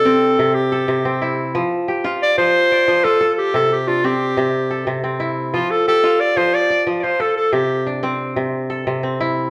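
A bright, classical-style clarinet carries a joyful, flowing melody up front over mellow, ringing fingerpicked kora arpeggios in this West African traditional passage, cut from a longer piece, in a straight 12/8, with the pair playing live in a stone room with wet reverb until the clarinet drops out at 7.9 seconds and the kora rings on alone to 9.5 seconds.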